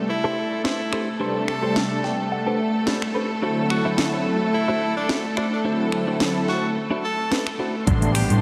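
Sensual and cosmic, this nu-disco excerpt in A dorian moves at 108 BPM with a light 16th-note swing, opening on rich sustained strings that pump against the beat while a bright tenor saxophone sings a tape-echoed melody and a clean, direct-recorded electric guitar picks a chorused, gritty riff with a fill from 1.8 to 3.4 seconds. A house kit of finger snaps, metallic hats, shaker and cracking snare joins, and a smooth, detuned sawtooth pad settles underneath as the harmony shifts from Am11 to D9 and back. Near 7.9 seconds a punchy kick, a growly overdriven bass and a very quiet pluck arpeggio arrive, capped by a faint electronic impact, all set in a dreamy cathedral-sized reverb.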